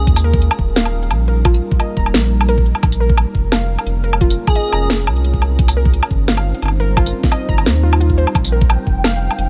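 Half-time drum and bass with a tense, heavy mood, this excerpt from a longer piece sits in a swung half-time groove over chords moving from Eb to Bbm7, Cm and back to Bbm7. Up front, a thick, saturated sub bass with a fast attack holds the low end beside a knocking electronic kick. The layered drum kit adds a cracking snare, metallic hats, tambourine and woodblock, all with a tape-warm, small-room character. Underneath, a deep, moody ambient pad of detuned sawtooth unison breathes with sidechain pumping, chorus and its own reverb. A warbling, lo-fi pluck spins dark arpeggios through chorus and dub echo, while an airy, dreamy lead with vibrato touches a single note briefly at the very start and again around 4.5 seconds. A flickering, grainy granular texture rises in at 8.5 seconds, and overall the mix stays fairly dry and loud.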